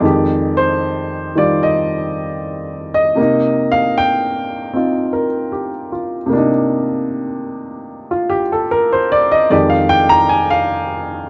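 Solo jazz for upright piano, moody and swinging with a loose, rubato feel, this short excerpt cut from a longer piece places the woody, up-front piano in light reverb as it moves through minor-ninth harmonies, with a dark, softened top end.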